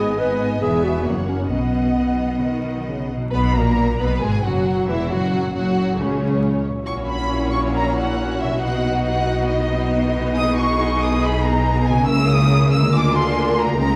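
Wet scoring stage reverb and vinyl crackle frame this stormy, dramatic fast romantic orchestral passage, where lush vibrato violins carry the soaring melody over a second violin line, rich close violas, ringing thumb-plucked harp arpeggios, and a bass of clear, distant cellos and smooth double basses, while a mellow, roomy clarinet adds its own second line only until 3.1 seconds.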